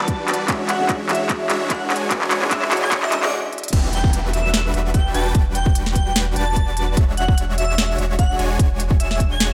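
An airy, dreamy lead with chorus, phaser and dub echo opens alongside a short-sustained concert grand piano and huge, bright detuned supersaw chords, each pumping to the sidechain. A hard-clipped electronic kick and a trap kit with sharp snare, crisp hats, handclaps and crash drive a filter-swept build-up and drum fill with a very quiet riser and downlifter, until, after a brief break, this bittersweet, lush half-time future bass cut drops at 3.7 seconds, where a deep, thick saturated sub bass arrives up front and the piano stops at 3.8 seconds.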